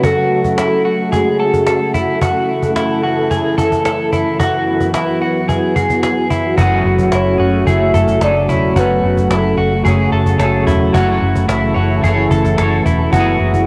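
A hazy home cassette recording bathed in a lush hall reverb opens this haunting dream pop fragment in F# minor, moving at 110 BPM in a straight 4/4. A silky string machine holds up-front sustained chords with a slow attack and ensemble chorus, while a dark, clean electric guitar picks arpeggios through analog chorus and delay, and a snappy cajon played with soft hands carries the beat with a small-room, tape-worn character. A round, octave-layered synth lead sings brief melodic phrases with vibrato, chorus, phaser and delay, first heard from the start and again at 7.1 seconds. At 6.6 seconds a bright semi-hollow electric guitar joins with tremolo-tinged accompaniment, and a punchy, foam-muted fingered bass settles into the low register beneath it. The harmony circles around F#madd9, A/F# and Eadd9/F#, giving the piece a suspended, drifting quality.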